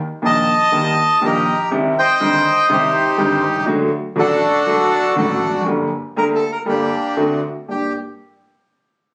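A reedy, dark bandoneon carries the melody up front, entering at 0.3 seconds and singing with a dramatic, passionate edge through this short tango fragment cut from a longer piece. Beneath it, a grand piano in an intimate, natural voice supplies the accompaniment from 0.2 seconds, its long sustain and audible action noise giving the low register a close, tactile presence. The feel is rubato in 4/4, pulling the phrases with an elastic, expressive pull rather than a strict beat. The harmony moves through Eb, Cm, D, Gm and D7 before settling back on Gm as a new section begins at 7.7 seconds, just as both instruments fall silent at 7.9 seconds. The sound carries a moderate large-room reverb with a club-like ambience, heard as if captured on a phone in the space, which lends the performance a candid, live character.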